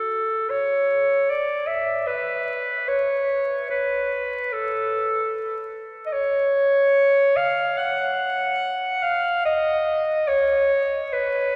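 Set in free time with an expressive, unmeasured flow, this short classical fragment for unaccompanied clarinet carries a nostalgic, lyrical mood. The bright clarinet plays alone up front from 0.0 to 11.6 seconds, ranging from A4 to F#5, its tone distant and roomy. A cathedral reverb with a 4.8-second decay bathes the performance, and a layer of vinyl crackle lends an aged patina to this brief excerpt cut from a longer piece.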